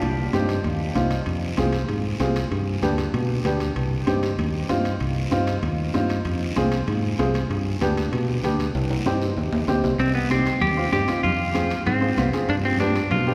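A straight cumbia pulse in 4/4 drives this fiery, danceable excerpt at 192 BPM, with a raspy guiro, ringing metal-shelled timbales and high-tuned, thick-skinned congas sitting in the background of the groove. Up front, a dark, round and punchy fingered electric bass anchors the low end. A clear, woody upright piano carries the accompaniment, its worn, slightly detuned tone and short sustain giving it an open, homespun character. The harmony cycles through C minor, F minor and G in C harmonic minor, closing on a G7. A drum fill at 8.7 seconds leads into a new section at 10.0 seconds, where a bright, twangy clean electric guitar enters with the melody, picked and compressed with a touch of spring reverb. The whole band sits in a cavernous, wet cathedral-like space with a long reverb tail, lending the dance rhythm a spacious, echoing glow.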